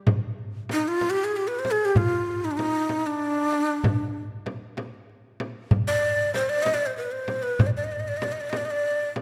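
This Arabic maqam ensemble piece moves at a hypnotic, melancholic 64 BPM in a straight 6/8, counted in dotted quarters. A small, bright frame drum sits up front from 0.1 s, while a large, deep darbuka with a clay shell and natural skin stays in the background, both drums heard close and dry. At 0.7 s an end-blown reed cane ney enters and carries the melody between D4 and Eb5. Its tone is breathy and unsteady, with vibrato, a crisp attack and a touch of chiff, and it sits prominently before the listener. The production is dark and warm, with a moderate scoring-stage reverb giving the ensemble a sense of space in this short passage cut from a longer performance.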